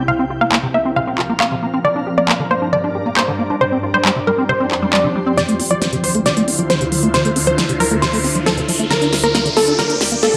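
Uplifting trance at 136 BPM in D minor, emotional and euphoric, where a shimmering, ethereal pad with a filter sweep and a squelchy, resonant acid bass arpeggio open together beneath a lush, detuned unison pluck melody, a big-room drum kit with a huge snare and crisp hats enters up front at 0.5 seconds, and a swell at 4.7 seconds leads into a build-up with a drum fill, a filter sweep on the bass, a riser from 6.9 seconds and a bright, airy supersaw stab tucked in the background, all in a dark production with moderate room reverb.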